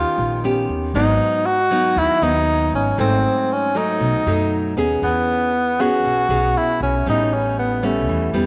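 A straight 4/4 bossa nova groove at 118 BPM sets a sophisticated, relaxed mood in this short cut from a longer piece, moving through jazzy chords such as D#7b13 and G#m7 before settling into E major at 5.0 s. Up front, a breathy tenor saxophone carries the melody in a mellow subtone with soft attacks, scooped notes, gentle vibrato and a slapback echo. Beneath it, a full-bodied, fingerpicked nylon-string guitar adds classical colour and faint finger squeaks, while a woody pizzicato upright bass anchors the low end, all set in a moderate plate reverb.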